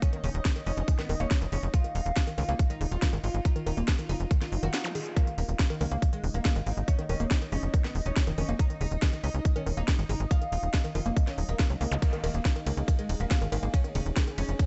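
A dark, dry mix with a muted top end frames this intense, hypnotic psychedelic trance excerpt in straight 4/4. An up-front, tape-warm electronic kick and a punchy, nasal sequencer bass drive it, under a techno kit of cracking snare, smooth hi-hats and ride. A deep, double-strung oud carries the melody through phaser, digital delay and sidechain pumping, alongside a woody wave-folded pluck riff and a morphing, detuned wavetable pad that sits in the background with chorus and its own reverb, while a very quiet wobbling formant bass surfaces briefly three times and a swell-and-zap effect marks a short break at 4.7 seconds.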